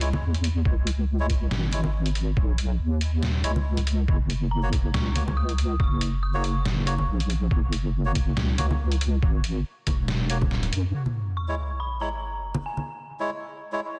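Deep dubstep with a heavy, cavernous mood and a swung, half-time feel, built on a wobbling, deep square-and-sine bass with chorus, a gritty, pitched-down kick and a compressed sampler-style kit whose filtered hi-hat and snare sit in small room ambience, while bright, dry congas add acoustic texture. A reedy, breathy melodica plays stabs with dub echo, and an eerie, inharmonic FM bell with long release and chorus floats in high above at 4.5 seconds and again at 11.4 seconds. By 10.9 seconds the drums have dropped out, and the bass ends as an up-front sub drop hits, leaving the melodica, congas and bell in the dense, heavily limited mix of this excerpt.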